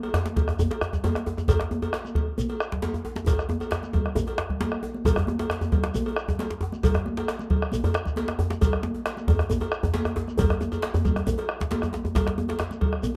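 Close, detailed microphones and light reverb give this short cut from a longer West African drum ensemble piece a crisp, present sound with just a touch of room around it. The mood is festive and driving, set in a straight four-four feel, with all six percussion parts entering within the first moments. A round, up-front bombo and one of two djembes sit loudest, both djembes tight and cracking with metal rattles, one close and the other in a live room under hard hands. Bright, high-tuned congas with thin skins ring from a smaller space, a metallic cowbell sounds distant as if from a large room, and a grainy, mellow shekere sits softly in the blend. A drum fill from 3.3 to 5.1 seconds carries the ensemble into a new section, and a brief fill arrives again at 11.8 seconds before the excerpt breaks off.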